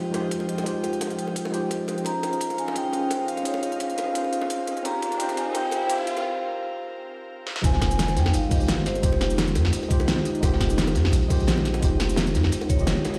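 A lightly swung 172 BPM pulse in 4/4 drives this melancholic, soulful liquid drum and bass piece in F minor, cut from a longer track. A thumpy, gritty electronic kick and a layered pop kit with a fat snare, crisp hats and shaker set the groove, while very quiet, tight bongos add a faint live-room patter. Up front, a worn, slightly out-of-tune tine electric piano, lightly overdriven with tape echo, carries the chords over a soft, breathy pad with chorus and sidechain pumping, moving from Fm9 through Dbmaj9 and C7sus4. A metallic, ringing vibraphone with fast motor vibrato takes the melody from 2.1 s, and a background riser from 2.8 s builds toward a short break. At the drop at 7.6 s, a deep, mellow 808-style bass arrives up front, with a dark, saturated breakbeat kit with a high-tuned snare sitting in the background, all inside plate reverb and the stone reverb of a bare room.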